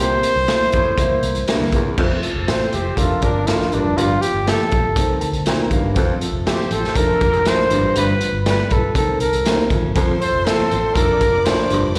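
Heard through a live venue's PA with light recital-hall reverb, this joyful stretch of uptempo 1960s-style soul at 120 BPM in F major features a mellow, close-miked trumpet that takes a solo from 2.0 seconds with vibrato and scooped notes, a raspy, growling baritone saxophone riff, a woody upright piano that adds a fill at 5.0 seconds, a round, foam-muted electric bass, a gritty garage drum kit with a boomy kick, a clear horn section in the background, and a bowed studio string section that enters at 10.0 seconds, with slapback echo on the trumpet, saxophone, piano, horns and strings.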